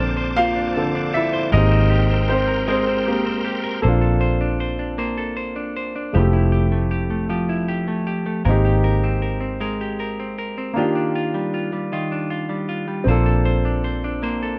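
In a slow, straight six-eight lilt at 52 BPM, this tender R&B excerpt rides on a dark, round, foam-muted electric bass sitting punchy and up front, while a polished grand piano takes a solo through the first 3.8 seconds over reedy, bright tonewheel organ chords with key click and fast rotary shimmer that stop at that point, and a clean, picked hollow-body electric guitar carries a second line in plate reverb beside the piano across lush major-ninth harmony moving from Bbmaj9 through Fmaj9, Abmaj9 and Ebmaj9 before settling back on Bbmaj9.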